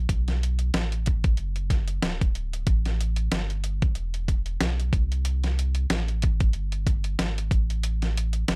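Jazz-hop in a mellow, smoky mood, this short excerpt cut from a longer piece rides a swung 4/4 groove. A warm sub bass opens at the very start, its deep, round, sine-like tone sitting up front with a fast attack and long sustained notes low in the register. Almost immediately the boom bap sampler-style drum kit joins, pitched down and compressed for a gritty character, with a thumpy kick, a medium-tuned snare and hi-hat placed close in the mix. The two parts carry the whole passage together, forming a sparse, bass-and-drums foundation. The sound is dry and intimate, with little reverb around it.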